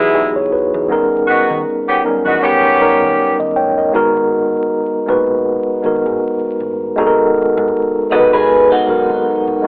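A mellow, clean tine electric piano with a cassette-tape tint plays this smooth, soulful, swung R&B fragment over Emaj7, D#7b13 and G#m9 chords, sounding from the start together with roomy, distant jazz-style horn stabs that stop at 3.4 s and a dark, round fingered dub bass sitting in the background, before a slightly broken-up, compressed picked guitar through a small old amp with lush chorus steps up front at 8.1 s, the home cassette recording carrying spring reverb, vinyl crackle and a telephone-like tone.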